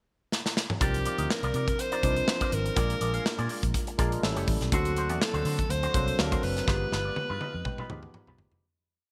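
Bright 1980s-style digital production with light small-room reverb frames this slick, bittersweet jazz-funk pop piece, where a punchy, up-front drum kit plays a crisp sixteenth-note groove with fills at 0.3 and 6.7 seconds, a dark, foam-muted fingered bass weaves an agile syncopated line with ghost notes, a barky, lightly overdriven tine electric piano with lush chorus pushes drop2 chords and adds a fill at 7.2 seconds, a twangy envelope-filtered guitar picks compressed sixteenth-note rhythm, and a breathy, whispered alto saxophone sings an intimate motif-based melody with vibrato on into the fade-out.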